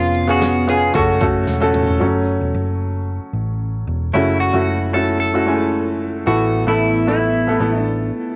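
Recorded at home on cassette in a snug booth, this short cut of earnest, bittersweet piano-driven pop in F# minor moves at 113 BPM, with a bright, woody upright piano sitting up front beside a dark, round hollow-body bass. A clean, twangy electric guitar carries the melody through lush chorus and plate reverb, while a punchy, layered electronic drum kit with a fat snare plays a fill at 1.5 seconds before dropping out at 2.0 seconds. The piano then takes a brilliant solo turn until 4.1 seconds, and the harmony settles from F#m7 to an open Asus2.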